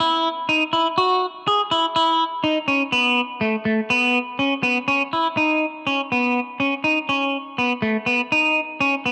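Driving and brooding, this short fragment of a progressive instrumental moves at 123 BPM in a straight 5/4, with a lone semi-hollow electric guitar playing solo from 0.0 to 9.1 seconds in the span from A3 to G#4, tuned to A4 = 439 Hz. The clean, picked tone sits up front with a scooped, hollow-body character and a cassette-tape colour, shifting to a new section at 4.9 seconds. A wet spring reverb with a 2.6-second tail surrounds it, giving the home cassette recording a roomy intimacy.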